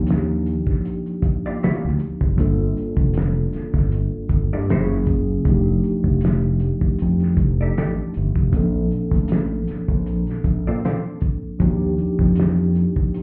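A bright, punchy fingered electric bass anchors the low end of this soulful neo-soul R&B fragment with a swung sixteenth feel, joined by a mellow tine electric piano on jazzy extended chords, a thuddy cloth-damped drum kit with a fat snare, tight kick and gritty, saturated tone, and a quieter dark, hollow-body jazz guitar carrying a second line from 1.5 seconds, the whole mix heard muffled as if through a wall with club reverb.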